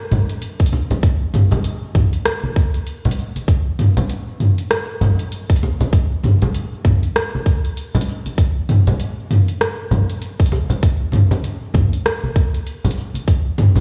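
A hypnotic, meditative downtempo groove opens with a deep house drum kit and congas arriving together at 0.1 s, the kit's cabasa, hi-hat, rim click and toms carrying an overdriven, layered electronic grit, as if re-recorded in a small room. The congas sit up front with a bright, compressed, saturated acoustic tone and a soft-handed touch. At 0.6 s a tight electronic kick joins, tape-warm and re-recorded in a large room, and it runs until 13.4 s while the kit and congas carry on to 13.8 s. The beat moves at 98 BPM in 4/4 with a lazy 16th-note swing that keeps the pattern loose and trance-like. A moderate echo-chamber reverb and the sense of a big sound system in a bare room give the whole percussion bed a roomy, enveloping tail, and this short excerpt is cut from a longer piece.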